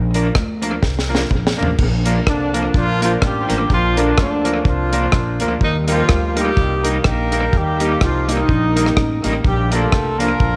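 A mellow, tightly octave-doubled horn section carries the melody up front with tape echo from 2.3 s in this joyful, upbeat ska excerpt at 125 BPM in Bb major, over a dark, dry reggae drum kit with a high-tuned snare, tape echo and a fill at 0.8 s, a growly pizzicato upright bass, a bright, slightly detuned upright piano playing background stabs, and a twangy, slightly broken-up electric guitar with tremolo, all set in a moderate echo-chamber reverb.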